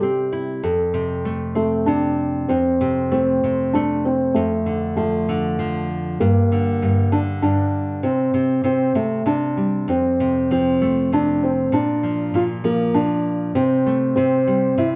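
Close, detailed microphones catch a moderate recital-hall reverb around this tender children's lullaby in F major, a 15-second excerpt moving in an unhurried 3/4 at 98 BPM. A felt-muted upright piano carries the innocent melody up front with a dark, velvety, vintage tone and a slapback echo, while a full-bodied, fingerpicked nylon-string guitar supplies classical accompaniment beneath it throughout. The harmony drifts through F, Dm/F and Gm, pauses on a chordless moment at 8.0 seconds, then resumes through Bb and Am/C before settling on C5.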